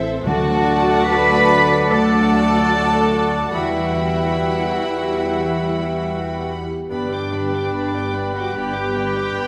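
Tender and uplifting, this short cinematic passage drifts with a rubato, unhurried feel, as if lifted from a longer orchestral cue. A dark studio violin section and a dark, woody, lush viola section open together with mellow, smooth-topped French horn chords, harp arpeggios that ring out, and a bowed double bass section, with every bowed string part played sul tasto. At 0.3 seconds a warm symphonic violin section takes the melody, pure and floating in the background, while a hollow, airy flute and a solo oboe with light vibrato add second lines and a distant, floating cello section joins the bass. Very quiet timpani with soft mallets sound a round, dry note only until 1.5 seconds. The harmony moves from D to Emadd9 to G, and the whole orchestra sits in a wet scoring-stage reverb with a faint hum beneath.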